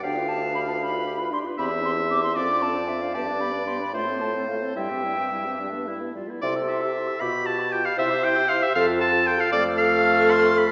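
Heard from further back in a wet scoring stage, this quick classical-period movement for wind quintet in 6/8 moves with graceful, spirited rubato and is cut from a longer piece. A hollow, pure silver flute carries the melody with vibrato, a bright oboe sits up front on the second line, and a clear, vintage-toned clarinet hangs in the background alongside a soft-attacked, distant French horn. A mellow bassoon anchors the bass, and at 6.4 s the music turns to a new section.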